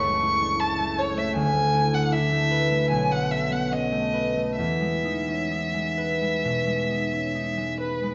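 A bright, ringing, fingerpicked concert harp and a single warm, bowed violin with vibrato and portamento begin together in this dreamy, luminous impressionist classical duo, the violin's expressive melody sitting up front yet sounding distant over the harp's accompaniment in a free rubato, all bathed in a wet recital hall reverb with vinyl crackle and a dulled top end, in a brief fragment cut from a longer piece.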